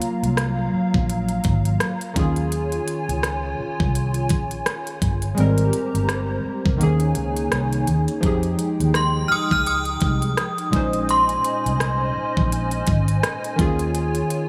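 A ringing, inharmonic FM synth chime with phaser and digital delay carries the melody from 9.0 s in this romantic, dreamy contemporary R&B excerpt at 84 BPM with a swung 16th feel, set over detuned analog keys moving through chords such as Gbmaj7, Abmaj9 and Fm9, a hollow, flute-like pad, a dark, foam-muted fingered electric bass, and a crisp, knocking trap kit whose kick drops out from 6.8 to 8.2 s, in a light small-room reverb.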